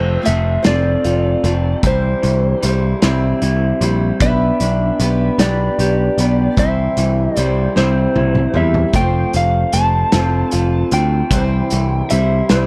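Jangly and hopeful, this short folk rock and heartland rock excerpt moves in a slow, straight 6/8 over a chord cycle from F through C and G/B back to C and F. A bright, slightly broken-up electric slide guitar carries the melody above a boxy old ladder-braced acoustic guitar and a dark, lo-fi electric guitar riff through a small old amp with vibrato. A punchy, up-front picked bass and a loose indie drum kit with a pumping room sound and a rolled-off top, entering at 0.3 seconds and playing a fill from 7.8 to 8.9 seconds, anchor a dry mix.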